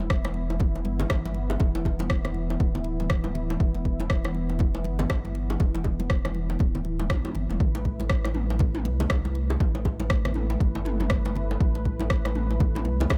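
A punchy, layered electronic kick sits up front in this spiritual, earthy afro house fragment, joined by a round sine sub bass with sidechain pumping, a smooth, detuned sawtooth pad with chorus and pumping holding sustained chords that move from Em7 to Am7 at 7.6 seconds, tight high-tuned bongos, dry hard-handed congas in the background, and a produced deep house kit with rim click and toms, with a drum fill arriving at 7.1 seconds, all with little reverb.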